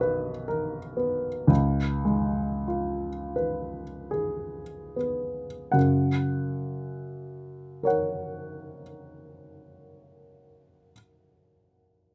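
Serene and tender, this brief excerpt of a romantic classical nocturne for solo baby grand piano moves in a rubato 12/8 at 23-45 BPM, counted in dotted quarters, in F# major with tuning at A4 = 441 Hz. The piano sits up front and intimate, ranging from B1 to F#5, and close, detailed microphones in light reverb capture its short, natural sustain and audible action noise. The opening phrase slows down over its first 5.7 seconds as the harmony moves from Bmaj7 to C#7, then settles on F# for a second phrase that runs to 12.1 seconds.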